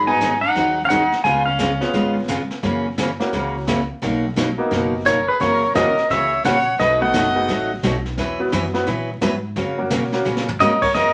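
A vinyl crackle sits over a wet studio ambience, giving this playful, cheerful western swing snippet a vintage, lived-in sound, cut from a longer piece. Up front, a clean, compressed electric pedal steel guitar carries the melody in short phrases, played with fingerpicks, slide and volume swells, while a clear, boxy, intense bowed fiddle with light vibrato shadows it as a second line, the pair returning together at 5.1 seconds. A bright, full-bodied dreadnought acoustic guitar picks along throughout, joined by a brilliant, woody, smooth upright piano, both sitting forward in the mix. Underneath, a thumpy pizzicato upright bass and a natural jazz kit played with brushes, with dark cymbals, a medium-tuned snare and a boomy kick, keep the swung 4/4 rolling over jazzy seventh-chord changes. A drum fill at 10.3 seconds leads into a final brief phrase from the steel and fiddle at 10.6 seconds.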